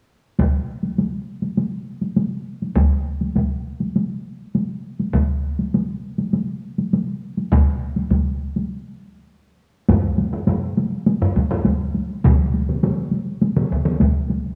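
Solo taiko drums struck with heavy sticks play through this ceremonial, driving Japanese taiko ensemble passage in straight 4/4, alongside a taiko ensemble throughout, an extra group from 9.9 s after a break, and a hard-stick group from 12.2 s whose compressed, saturated hits sit up front, all heard through a recital-hall reverb and the warbling pitch drift of worn cassette tape.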